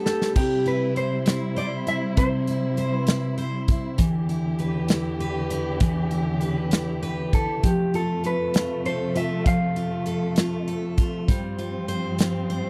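Tender and romantic, this short excerpt of a six-eight pop ballad opens on a drum fill from a natural country kit with a punchy kick and medium-tuned snare, while a full-bodied picked dreadnought acoustic guitar accompanies and a dark, smooth-topped bowed string section sustains chords from C through Em7 and F to G7sus4, and a mellow, clean electric guitar sings the melody in two phrases at 0.1 and 7.3 seconds, all captured in a dry, close 1970s-style studio sound.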